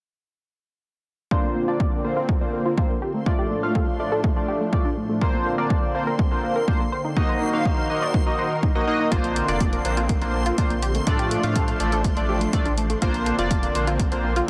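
Progressive house at 123 BPM in Bb major, uplifting and euphoric. From 1.3 seconds a punchy overdriven kick drives glossy chorused polysynth stabs with dub echo and a filter sweep, a nasal sequenced arpeggio with its own sweep, a lush supersaw pad and a dreamy reversed texture, which all pump together over Bbadd9, Dm/A and Ebm chords. A round, deep analog bass with tube saturation and bright hi-hats join at 9.1 seconds in this excerpt from a longer track.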